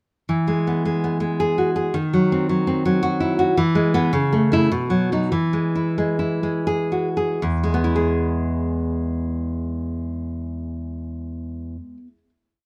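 Set in a moderate studio reverb, this short romantic piece for solo classical guitar has a sunny, nostalgic mood. The nylon-string guitar sits up front with a full-bodied, deep tone, fingerpicked in rocking broken chords across a low-to-middle range. The playing moves in a lilting triple metre with a free, rubato feel, and from 2.8 seconds it gradually slows down. The harmony moves from E through D#m6, A/C# and B before settling back on E. At 7.4 seconds a final chord rings out, bringing the whole piece to rest.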